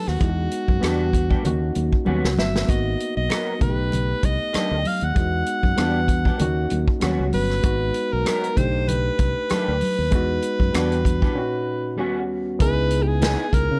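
Heard in a small room, this short cut from a longer piece of lush 1970s-style soul carries a bittersweet, silky mood at 97 BPM in 4/4, with a light swing on the sixteenths. An edgy alto saxophone leads up front in a jazz-style solo full of scooped notes, over a reedy electric piano that is lightly overdriven and bathed in spring reverb. A round, direct fingered electric bass and a tight soul drum kit with a rolled-off top, medium-tuned snare, hi-hat, kick and rim click hold the groove, while very quiet congas with a thick skin sit underneath. From 0.8 seconds a bright, twangy electric guitar through a small old amp adds a picked riff with analog chorus and a lo-fi, slightly broken-up grit. The harmony moves through rich chords such as Emaj9 and G#m9, with a drum fill at 2.1 seconds and a break at 11.4 seconds before the progression settles on C#m9.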